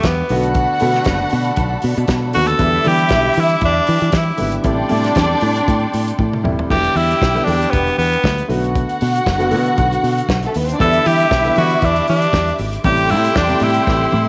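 A raspy, forceful tenor saxophone leads this sultry, danceable disco excerpt from up front, over a biting violin section with vibrato, an intimate baby grand piano with audible action noise, a punchy fingered electric bass, and a soul drum kit with a tight kick, dark cymbals and short fills, while a lush, distant string section holds chords in the background, falling away at 6.7 seconds and returning at 10.8 seconds, the whole mix sitting in a moderate echo chamber reverb with a faint mains hum.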